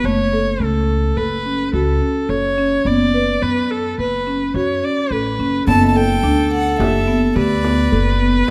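A woody marimba played with medium mallets opens with arpeggios, joined from the start by a dark, growly pizzicato upright bass sitting up front and a clear viola carrying a second line with intense vibrato. This contemporary chamber piece moves in an uneven 5/4 at 107 BPM with a straight feel, and its pensive, restless mood rests on F#m harmony shifting to Bmadd9/F#. At 5.7 seconds the harmony turns to Gadd9/F# as a rich violin takes the melody, bowed sul tasto with light vibrato and an airy, intimate tone. A very quiet frame drum played with soft hands adds percussion at the same moment. Light reverb gives the small ensemble a sense of space, and the passage, cut from a longer piece, ends at 8.5 seconds.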